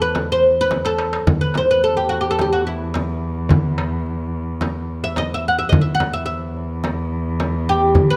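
Soulful and melancholic, this short passage cut from a longer Arabic maqam ensemble piece moves at 108 BPM in a straight 4/4, set in E maqam nahawand. A plectrum-plucked, fretless oud carries the melody between E4 and F#5, its double strings giving a woody, mellow voice that sits up front in the mix. Beneath it, a single muted cello bowed con sordino holds a drone on E2, dark and veiled with vibrato and a smooth top. A small metal-shell darbuka played with hard hands adds crisp, high strokes with a band-limited, vintage colour, while a large frame drum, close and dry, supplies a deep foundation. A drum fill arrives from 0.7 to 1.3 seconds, and the whole ensemble plays throughout, captured by close, detailed microphones with light reverb.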